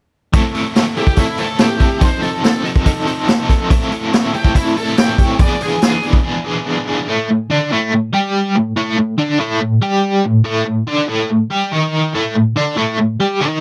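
A dry, close recording with a 1970s studio feel and little reverb frames this gritty, brooding excerpt of blues rock and southern rock in a power-trio mold. A biting, bright, double-tracked overdriven guitar drives a tremolo-treated riff over Am7, F7 and E7, backed by a raw garage drum kit whose punchy kick, saturated snare and hi-hat sit up front with a rolled-off top, while a dark octave-fuzz lead guitar with wah and distortion adds a quieter melody from 1.0 seconds. The drums stop at 6.2 seconds for a break, after which the riff guitar carries on alone over a D#maj7#11/A chord until 13.6 seconds.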